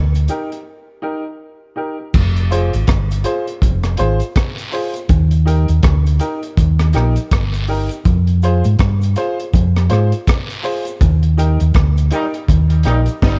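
Roots reggae at 81 BPM in F dorian, this short cut from a longer piece has a meditative, serious mood, with a 16th-note swing and a dry, close sound. A round, hollow-body fingered electric bass sits up front with a dark, amped tone, moving between Eb and F minor harmonies. A crunchy breakbeat drum kit brings a punchy kick, high-tuned snare, rim click, hi-hat and dark crash cymbal, its saturated, gritty character and rolled-off top giving the groove weight. A woody, slightly detuned upright piano adds clear stabs in the middle register, while cabasa and guiro shade the background from a small room. A break lands early, a band accent arrives at 11.0 seconds, and a brilliant, tight trombone section enters at 12.1 seconds with a light vibrato just before a drum fill at 13.2 seconds.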